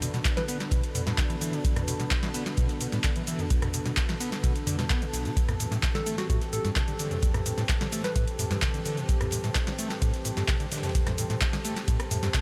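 Acid house with a raw, gritty mood, this excerpt from a longer piece moves in a straight 4/4 over a Bm7 that shifts to Am7 at 5.4 seconds. An overdriven acid bass drives the riff with a squelchy, resonant square-wave tone and a filter sweep, touched by subtle chorus and a diffuse ambient delay. A booming analog drum machine sits up front with overdrive, crisp snare, metallic hats, handclaps, rim click, shaker and toms, while an electronic kick with a deep, tape-warm thud joins at 0.3 seconds, and a dry, high-tuned reggae kit with ride cymbal and snare lingers very quietly underneath. Two pads share chorus, built-in reverb and sidechain pumping: a warbling, nostalgic, lo-fi tape-like pad holds the harmony with detuned, wave-folded sustained chords, and a deep, moody, full-bodied ambient pad with a sub octave adds texture. A soft, round, keys-like FM lead with chorus, tremolo and tape echo sits in the background, sounding a brief note near the start and returning from 5.9 to 8.2 seconds. 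The whole mix is dreamy and soaked in a huge ambient reverb.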